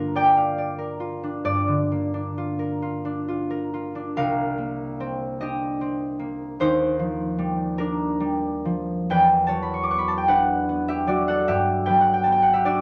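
A solo concert harp, fingerpicked and ringing, sits up front in this gentle, wistful classical fragment in C dorian, spanning C2 to D6 and tuned slightly high to A4 = 441 Hz. It moves in a slow, rubato 6/8 at roughly 43-53 dotted-quarter beats per minute, opening on Gm7 before a new section begins at 4.2 seconds and drifts through Cm9, Ebmaj9 and Em9 to Gmaj9. A moderate studio reverb frames the acoustic harp in this brief passage cut from a longer piece.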